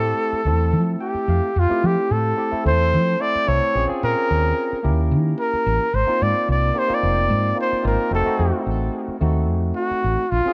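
A funky, soaring stretch of electric jazz fusion, cut from a longer piece, opens with a warm trumpet singing the melody up front with light vibrato and scooped notes, over a round, woody fretless bass treated with ensemble chorus and a barky, clean electric piano. The piano slips in a bright fill from 0.7 to 1.6 seconds over Fmaj7, and the harmony later moves through Bbm7, Eb7b9 and Ab69 before landing on F7b9 at 8.1 seconds. Light reverb and a dark, warm production give the whole a smoky glow.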